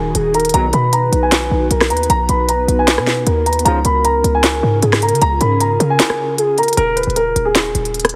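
A dark concert grand piano carries the melody from Ab4 to B5, its smooth, vintage tone softened by a low-pass filter and cut short by brief sustain. This eerie, hard-hitting trap cut in Eb minor moves at 154 BPM with a half-time feel, and it is taken from a longer piece. A gliding portamento lead adds a second line with sine-like vibrato, chorus and delay until 6.8 seconds. Beneath it, an ethereal, detuned pad holds sustained chords in the background. Up front, a punchy, tight 808-style bass sits with an electronic trap kit of sharp snare, crisp hi-hats, rim clicks and handclaps. Mellow brass stabs land briefly at 0.5 and 3.7 seconds, and the whole piece has a heavily compressed, radio-like sound in a light digital ambience.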